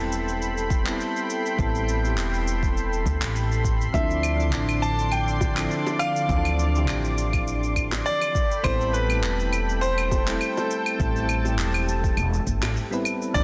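A lightly swung 102 BPM groove in 4/4 carries this smooth, wistful sunset chillout piece over Am9 and Dm9 chords, with a woody, thumpy pizzicato upright bass up front, a deep, overdriven electronic kick entering at 0.7 s to join gritty electronic cabasa, handclaps and claves already under way from the start, soft, round electric-piano-like synth keys with chorus and digital delay, a lush, detuned pad with chorus, a brilliant grand piano melody with tape echo and audible action noise arriving at 3.9 s, and tight, high-tuned bongos sitting in the background from 5.4 s, the mix wrapped in light digital ambience under a dense, heavily limited modern master.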